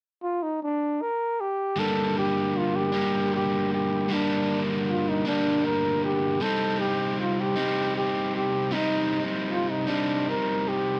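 Rock in a moody, bittersweet G minor, moving slowly at 52 BPM in 6/8, with a breathy trumpet opening the melody at 0.2 s: its tone is dark and whispered, with vibrato, scooped notes, a soft attack and slapback echo, sitting intimate and up front in a pop style. At 1.8 s a compressed, overdriven electric guitar enters with a picked riff as the harmony settles on Gm, shifting to Cm at 6.4 s. The excerpt has a dry, close 1970s-style studio sound with light reverb.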